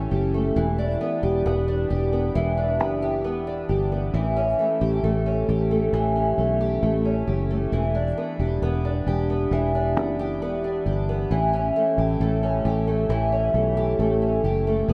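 Steeped in a lush hall reverb, this haunting, melancholic dream pop excerpt drifts at 67 BPM in straight 4/4, as a woody, octave-doubled fingerpicked twelve-string acoustic guitar spins shimmering arpeggios through chorus, tape echo and shimmer reverb over a round, punchy, foam-muted fingered electric bass, both up front, while the harmony sways between A7 and Em7 for the full 14.9 seconds.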